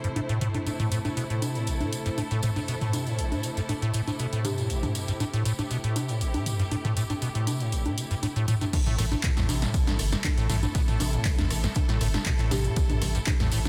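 Hypnotic and gritty, this acid house passage in A minor moves at 119 BPM in a straight 4/4 and is cut from a longer piece. A squelchy, resonant square-wave acid bass riff sits up front with filter sweeps and digital delay, pumping against a sidechain alongside distant, lush bowed strings holding sustained chords and a blurred granular cloud pad drifting in the background with its own reverb. A punchy, overdriven analog drum machine runs throughout with congas, handclaps, hi-hat, ride and crash cymbals, rim click, snare and toms, joined from 0.7 seconds by a jingly, close tambourine. A woody marimba played with soft mallets drops brief dub-echoed G4 notes into the background. The drop arrives at 8.7 seconds, where the pad falls away and an electronic kick recorded in a small room enters, followed at 9.0 seconds by a thick, tube-saturated sine sub bass. The dense, heavily limited master carries only light reverb.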